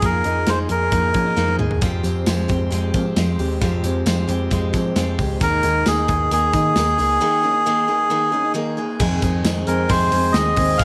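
A small room with light reverb frames this short cut from a wistful, restless jangly indie pop piece in F minor, moving at a straight 134 BPM in 4/4. A reedy, breathy melodica sits up front with slapback echo, carrying the melody at the start, dropping out at 1.6 seconds and returning at 5.4 seconds. Beneath it are a bright picked steel-string acoustic guitar with finger squeak, slightly broken-up lo-fi electric guitar arpeggios with their own slapback echo, a dark, round foam-muted bass, and a polished studio drum kit with punchy kick and a brief fill, while a very quiet, jingly tambourine joins at 1.8 seconds.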